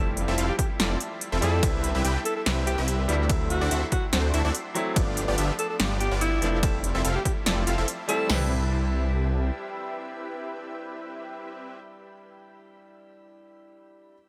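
Lush and playful, this half-time future bass drop at 144 BPM in C major opens on a breathy, intimate alto saxophone melody with vibrato and scooped notes, carried over a clear concert grand piano, punchy detuned supersaw stabs, a thick chorused saw bass and a faint, ethereal shimmering pad, with sax, piano, stabs and bass pumping to the sidechain and tape echo trailing the sax, piano and stabs. Meanwhile an overdriven big-room dance kit with punchy kick and crisp hats drives the drop as the chords move through Fmaj7, Cmaj7, D7, G7 and Fmaj7. Around 8.3 seconds the drums and sax fall away and the harmony settles on Cmaj7. The stabs and pad carry on to 11.8 seconds, and then the piano lingers alone to 14.1 seconds.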